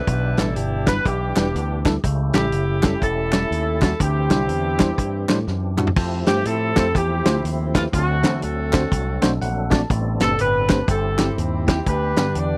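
Uptempo gospel at 122 BPM in G major with a swung, soulful and jubilant feel, where a mellow, tight saxophone section carries the melody up front over a fat-snared soul drum kit, a bright picked bass with an envelope filter, a bell-like tine electric piano that adds a fill at 9.2 seconds, a lightly overdriven tonewheel organ with key click, chorus vibrato and slow rotary speaker holding sustained chords in the background, and crisp group handclaps, all in a dry, close 1970s-style studio sound.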